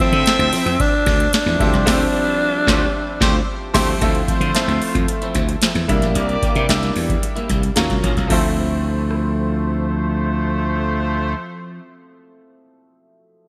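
Nocturnal and urban, this polished 1980s jazz-funk pop fragment, cut from a longer piece, moves at 112 BPM in D minor, with a raspy, gritty alto saxophone up front carrying the melody only until 3.4 s while a distant, roomy horn section with light vibrato plays a second line. A brilliant, worn grand piano with analog chorus supplies accompaniment throughout, and a slightly broken-up electric guitar, also chorused, plays a compressed, picked riff in the background. A booming analog drum machine with deep kick, crisp snare, metallic hats and gated reverb plays until 9.2 s beside a growly, punchy slap bass, with a band accent ending at 4.0 s over Dm11 harmony, the whole mix set in a lush hall reverb with a bright digital 1980s sheen.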